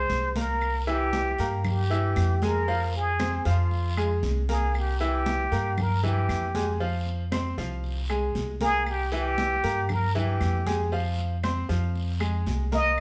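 Sultry and nostalgic, this 13-second excerpt of Cuban son and guajira moves at 116 BPM in F minor, rocking between F minor and C7 as a plunger-muted trumpet carries a breathy, whispered solo full of wah-wah, vibrato and scooped notes up front. A brilliant grand piano spins short-sustain arpeggios beneath it, while a woody pizzicato upright bass sits forward in the mix. High-tuned vintage congas and dry, woody claves sit in the background, and a raspy guiro joins them to fill out the percussion, all captured as a band playing live in one room with moderate studio reverb.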